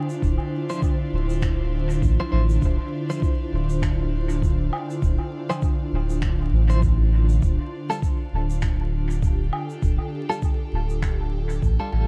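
Ambient dub at 100 BPM in D minor, hazy and deep, where a round, up-front sub bass and a muffled, thumpy kick anchor an airy, breathy pad with chorus holding Dm9 before moving to Fadd9/D at 7.4 seconds, while clean picked electric guitar stabs with tremolo and dub echo enter at 0.7 seconds over a faint shaker, finger snaps and woodblock, all wrapped in a dark production with vinyl crackle and a small room ambience until the fade-out from 10.6 seconds.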